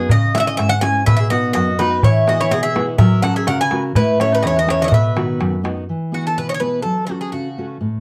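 A bright, metallic Greek bouzouki carries the melody up front, its picked double strings ringing with some octave-doubled courses in this joyful, energetic piece of Greek folk music in a brisk 2/4 with a straight feel. Beneath it, a full-bodied fingerpicked steel-string dreadnought guitar, also up front, supplies warm accompaniment from the start through to the close of this short fragment cut from a longer piece. A crisp metal-shell darbuka drives the rhythm with a small-room sound until about 5.8 seconds, while a mellow, round mandolin adds a picked second line on its double strings from 1.1 seconds. The chords move through C#m, B, E, F#, A and B before a new section at 5.9 seconds shifts to E and F#m. Moderate studio reverb and a dark, warm production round out the band's sound.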